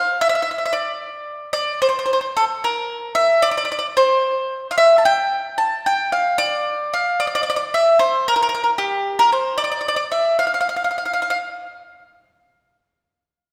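A straight, lilting 6/8 feel in dotted-quarter pulses carries this sunny, lively Italian folk piece, cut from a longer work. A single bowl-back mandolin plays solo from the start until 11.4 s, its picked double strings giving a warm acoustic tone that ranges from G4 up to A5. The instrument sits up front, even as the recital hall's wet reverb, with a long 1.9-second decay, places the listener further back in the room. Tuned slightly high to A4 = 444 Hz, the mandolin has a warm timbre that suits the cheerful mood. The opening section gives way to a new one at 12.0 s, after the mandolin has fallen silent and only the hall's lingering resonance remains.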